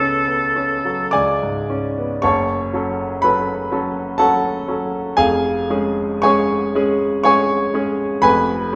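A rubato 3/4 pulse drifts between 51 and 62 BPM in this brief, melancholic and elegiac classical fragment in F# minor, cut from a longer romantic duo for oboe and grand piano. The oboe sings a short, distant phrase with light vibrato that ends at 1.1 s, while the clear, vintage-toned concert grand carries on alone to 8.8 s with deep bass and short sustain. Both sit up front in a recital hall reverb, and the piano moves into a new section at 2.2 s.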